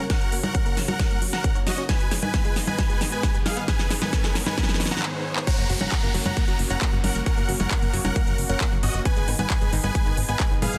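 Soaring and uplifting, this uplifting trance passage in 4/4, cut from a longer piece, opens with a build-up where a big-room drum kit rolls through fills of snare, handclaps, congas, crisp hats and crash, while a filter sweep works across a bright, round analog pluck playing arpeggios in the background. Above it a huge, euphoric supersaw lead carries the melody, detuned in unison and compressed, pumping with the sidechain and trailed by digital delay, while a silky, string-like pad holds sustained chords with ensemble chorus and vibrato. A very quiet riser and downlifter drift through from 1.2 to 9.1 seconds. At 5.5 seconds the drop lands, and a dark, funky, plucky analog bass joins at 5.6 seconds under the punchy, up-front electronic kick and the huge, softly clipped snare. The harmony moves between F# and G#m, and the dense, heavily limited master carries a light reverb and a tape-warm sheen on the drums.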